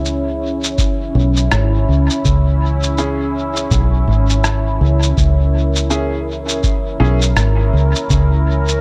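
A foam-muted fingered electric bass sits up front in this spacious, deep ambient dub piece, its tube-saturated tone holding low between G#1 and C#2 over a single C# minor chord in C# dorian. At 82 BPM in 4/4 with a 60% swing on the sixteenths, a sampler-style electronic shaker and rim click, compressed and muffled, trails dub echo. An analog electronic kick joins at 0.8 seconds with a tape-warm, deep thump. Alongside them, a moody, evolving pad of detuned unison sawtooth and a sine sub octave holds sustained chords, its slow attack and long release softened by chorus and built-in reverb into a mellow haze. From 3.0 to 7.2 seconds, clear, woody upright piano stabs appear, roughened by vintage 12-bit sampler grit and thrown into dub echo, all set in a light reverb in this short cut from a longer piece.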